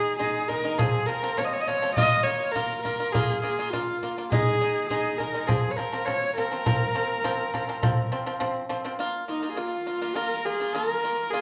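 Mongolian folk in a traditional vein, solemn and windswept, moves at 102 BPM in a straight 4/4 in Bb minor, cut from a longer piece. A clear, husky horsehead fiddle carries the bowed melody up front with light vibrato and portamento, while a fingerpicked pipa plays dry, percussive arpeggios beneath it and a small, bright frame drum, played with soft hands, adds percussion until 8.8 seconds. The band sounds as if it is playing live together in one room, wrapped in a wet large studio reverb, and the music moves into a new section at 9.0 seconds.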